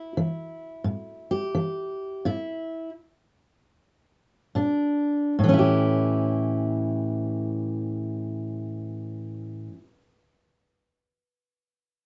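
Blues in A mixolydian at a swung 70-89 BPM, this soulful, rollicking excerpt features a fingerpicked steel-string acoustic guitar, full-bodied and up front, whose accompaniment slows down through the opening 5.4 seconds, halts from 2.3 to 4.6 seconds, then moves from Bb to A7 in a moderate studio reverb with a soft, rolled-off top end and tuning slightly below standard pitch.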